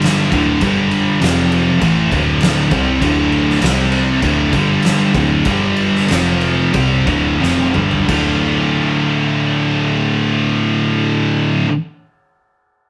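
A scooped, high-gain guitar sits up front, bright and double-tracked, grinding out a riff in D minor over a sludgy, brooding stoner and doom metal groove at around 86-100 BPM in a straight 4/4. Beneath it, two thick fuzz guitars pile on dark, picked riffs, one pushed into the background, while an overdriven picked electric bass adds a round, foam-muted low end. An oversized low-tuned drum kit booms through a bright stone room with a pumping ambience, pairing a fat snare and boomy kick with dark cymbals and toms. The tempo slows from 3.0 seconds, a drum fill arrives at 7.4 seconds, and the drums stop at 8.2 seconds as the guitars and bass carry a new section toward the close of this fragment of a longer piece. Light reverb and a rough rehearsal-room sound give the whole take a raw, heavy feel.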